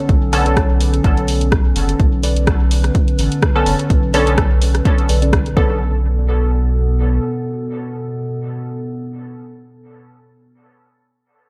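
A lightly swung 4/4 groove opens this nocturnal, hypnotic dub techno fragment, with an overdriven, punchy kick running until about 5.7 seconds beside a dry analog drum machine's dub-echoed hi-hat and rim click, while a round, soft sub bass pumps beneath a warbling, nostalgic tape-like pad holding a Bm9 chord, a muted, detuned chord stab drenched in chorus, phaser, cassette grit and dub echo, and a very quiet, dusty lo-fi pluck riff, the whole mix carrying light reverb and lossy compression artefacts.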